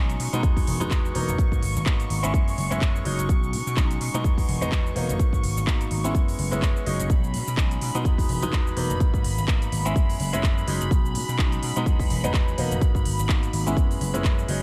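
Filtered disco house at 126 BPM in G# minor, this groovy, nostalgic excerpt rides a swung 16th-note feel as it cycles through Emaj9, G#m9, F#9sus4 and B69. A house kit of handclaps, crisp hi-hats and shaker enters at 0.1 seconds, its percussion and hats pumping against the sidechain, and a punchy electronic kick joins up front from 0.4 seconds, both heard in a small room ambience. A vintage slap bass, amped and tube-saturated, carries the low end with a punchy tone, pumping and low-pass filtered. A bright baby grand piano plays accompaniment in its middle register, intimate and polished with audible action noise and short sustain, colored by phaser, sidechain pumping and a low-pass filter. High above, a clear studio string section holds sustained chords with light vibrato and a biting, earthy bowed edge, also pumping and filtered, all in a dry mix with little reverb.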